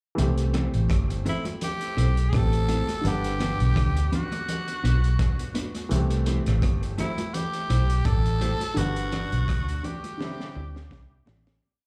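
A raspy, close-miked tenor saxophone carries a sweet, romantic lovers rock melody built from short song-like phrases, with vibrato, scooped notes and dub and slapback echoes, entering at 1.3 seconds. Beneath it, a round, foam-muted vintage bass sits up front with a melodic line and slides, while a gritty breakbeat kit plays a one-drop groove with its kick and rim on the backbeat. A dark baby grand piano holds mellow chords, a clean electric guitar chops quietly on the off-beats, and ringing high-tuned congas mark beats one and three, all heard as a live gig through the venue's PA before a fade-out from 8.8 seconds and a closing drum fill.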